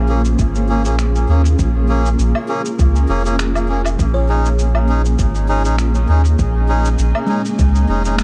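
A lightly swung groove in four, gently pushed on the sixteenths, drives this hazy, meditative stretch of ambient dub, cut from a longer piece. A deep, round, soft sub bass with tube saturation sits up front, while an electronic kick, layered and tape-warm, thuds in the background under studio reverb. Muffled, pitched-down shaker, finger snaps and woodblock add a compressed, sampler-style texture, sent through studio reverb and dub echo. A cloudy, blurred granular pad sustains detuned, evolving chords that move from Bbm7 to Dbsus2, as a reedy, nasal melodica punctuates the haze with stabs trailed by dub echo. At 4.1 s a buzzing, woody kalimba joins in the background, its short, hollow-box arpeggios sent through tape echo, all within a dark, warm, nearly dry mix.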